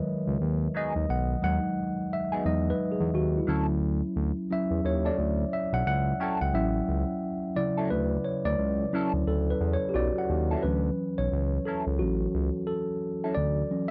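A worn, slightly out-of-tune tine electric piano opens this relaxed, soulful R&B excerpt at 88 BPM with a swung 16th-note feel in D major, taking the solo over Emaj9 and Dmaj9 chords. A saturated, ring-modulated synth bass enters at 0.3 s, and a dark, fingered clean electric guitar with wah adds a second line from 0.7 s, in a dry, close 1970s-style studio recording.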